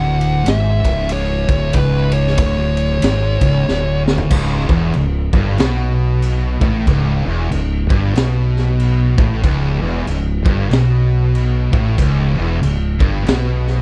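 A dry stoner and doom metal excerpt with a hypnotic, sludgy swing opens with a distorted fuzz lead guitar, colored by tape echo, carrying a short melody until 4.0 seconds over two thick fuzz guitars playing a low riff in the background, an up-front growling fingered bass with overdrive, and a gritty, punchy garage drum kit heard in a small room with dark cymbals and a high-tuned snare, whose fill leads into a new section at 4.3 seconds where a bright, double-tracked overdriven electric guitar joins the riff.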